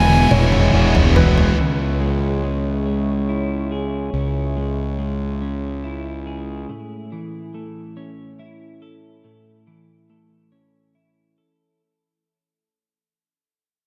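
A bright, twangy twelve-string electric guitar takes over with up-front arpeggios at 1.6 s and carries this hopeful, cinematic post-rock excerpt in slow 6/8 at 47 BPM through a fade-out over E, C#m and A. It follows an opening tom fill in which a reedy bowed violin line ends at 1.2 s, and a muted upright piano with audible action noise, an overdriven electric guitar riff and a thick dark fuzz guitar riff all stop at 1.6 s. A punchy, round fuzz bass and a deep, detuned analog pad hold on until 6.6 s, and everything is soaked in dreamy reverb.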